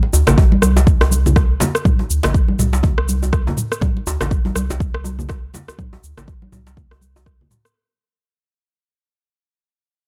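A deep, up-front electronic kick drives this short afro house cut, with a round, mellow sine sub bass beneath it carrying tube saturation and sidechain pumping. Bright, thin-skinned congas sit close, a soft-handed djembe adds metal rattles from a small room, and a produced afro-pop kit contributes rim clicks, shaker and toms over a swung groove with a spiritual, warm mood. The dry, gritty mix fades out across its full 7.8 seconds.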